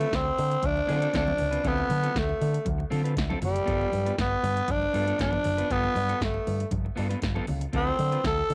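Disco in D dorian at 118 BPM, this sultry, danceable excerpt sets a raspy, growling tenor saxophone up front over a slightly broken-up electric guitar with spring reverb and cassette tape, a round picked bass through an envelope filter, a dry analog drum machine with deep kick, punchy snare and metallic hats, and very quiet ringing congas entering at 0.1 s, moving from Dm7 to G9 at 3.7 s and back, all with a home-cassette feel.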